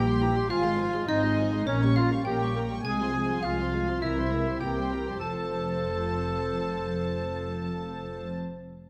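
A clear, present solo clarinet carries the second line in this whimsical, playful film cue, joined by a vibrato-rich oboe on the same line and a soft-attack, floating violin section an octave above. The melody sits in a bowed, woody violin section playing sul tasto with vibrato, alongside a dry, percussive xylophone struck with wooden mallets in a boxy small-room sound. In the background, a viola section adds pure, smooth accompaniment while a dark French horn section holds sustained chords with light vibrato. An intimate cello section and a double bass section, both bowed sul tasto with soft attacks, anchor the bass. At 102 BPM in a straight 4/4, the harmony moves through F minor colours and a C7 before settling on F major as a new section begins at 5.2 s, giving the fragment a magical, mischievous air. A moderate scoring-stage reverb surrounds the ensemble in this short passage cut from a longer piece.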